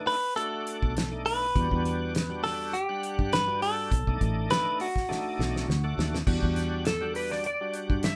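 A straight-eighth soul blues groove in 4/4 at 102 BPM, with a light sixteenth-note swing, sets a brooding, mournful tone in E minor, carried by a dry, damped 70s drum kit with a fat snare and tight kick up front, and a round, dark, foam-muted fingered bass entering at 0.8 seconds. A clean, compressed, direct-recorded electric guitar picks the melody until 5.9 seconds over a bright, shouting tonewheel organ with light overdrive, key click, chorus vibrato and a slow rotary speaker, moving between B7#9 and Em9 chords. After a drum fill at 5.1 seconds, a warm, slightly broken-up electric slide guitar steps forward for a short solo at 6.9 seconds in this fragment of a longer piece, all set in a moderate small-room reverb with the band playing live together.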